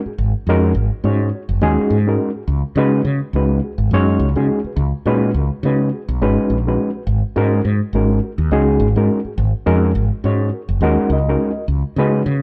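Electric jazz fusion with a funky, soaring mood, this excerpt moves at 104 BPM in 4/4 with a light swing on the sixteenths. An overdriven reed electric piano carries the accompaniment, its gritty, reedy tone pushed through a combo amp and shimmering with harmonic tremolo. Beneath it, a mellow fretless electric bass sits up front with a dark, round, direct sound. The harmony rests on suspended ninth chords, moving from Ab9sus4 to Db9sus4 at 2.5 seconds, back to Ab9sus4 at 7.1 seconds, and again to Db9sus4 near the close. The electric piano steps forward with a fill from 10.5 to 11.7 seconds, and both players share a moderate stone room reverb that gives the feel of a band playing live together.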